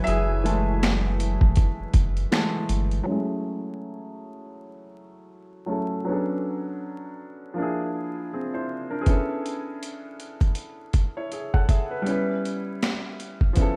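A soft, muted upright piano opens this melancholic, nostalgic lo-fi hip hop excerpt with a detuned background pad, a round bass and a gritty, pitched-down boom bap kit of thumpy kick, high-tuned snare, hi-hat and finger snaps, all swung and coloured by vinyl crackle, light reverb and a rough home-demo mix, before the pad, bass and drums fall away at 3.1 seconds as a filter sweep washes over the piano through jazzy ninth chords, with the drums returning at 9.1 seconds.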